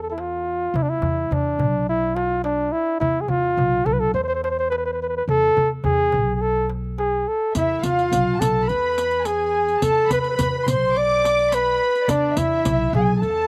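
A flugelhorn carries the melody up front with a warm, pop-style vibrato over woody, growly pizzicato upright bass and a crisp, metal-shell darbuka set back in the mix, in this passionate Arabic maqam ensemble piece in E hijaz at 106 BPM in a straight 4/4. At 7.5 seconds a riq adds dark jingles, and at 7.6 seconds an intimate, smooth-topped violin section joins with a bowed, soft-attack second line touched by light vibrato. The sound is close and dry with little reverb, recorded outdoors, and the passage is cut from a longer piece.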